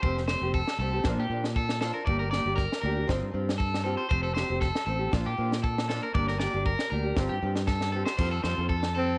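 A sunny, danceable highlife guitar band excerpt with moderate spring reverb in a small room, at 118 BPM in F major with a light swing, where a twangy, slightly broken-up electric guitar plays up-front arpeggios with slapback echo over a dark, boxy fingerpicked parlour acoustic guitar, a round, punchy fingered bass and a dry cocktail drum kit with a high-tuned snare and dark cymbals that plays a fill at 7.7 seconds, before a breathy, whispered alto saxophone enters at 9.0 seconds just as the cut ends.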